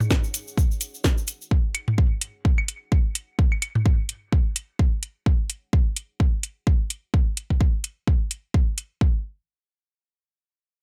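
This cool, sparse minimal techno piece at 128 BPM in 4/4, with a light swing on the 16ths, opens on up-front analog electronic toms and claves trailing dub echo, a grainy, bright tube shaker and a deep, moody, detuned sawtooth pad in the background with chorus and sidechain pumping that fades out by 1.5 seconds, while a punchy, tape-warm electronic kick and a house kit with cracking snare and metallic hats drive the dry, close mix; the toms and claves stop at 3.8 seconds, and the drums drop away near 9 seconds.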